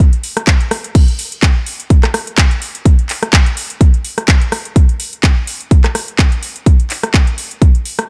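A punchy electronic kick drum leads this aggressive, swaggering house groove, sitting up front with a layered, tape-warm weight. It runs from the start until 7.7 seconds, while the electronic house drum kit carries on to 8.1 seconds. That kit fills out the pattern with a crash cymbal, handclaps, metallic hi-hats and a rim click, also layered, produced and placed close in the mix. The tempo is 126 BPM in 4/4, with a 55% swing on the sixteenths that gives the beat its strut. Both drum parts carry the snug character of a small room, and the overall sound is dry and forceful, a short drums-only passage cut from a longer piece.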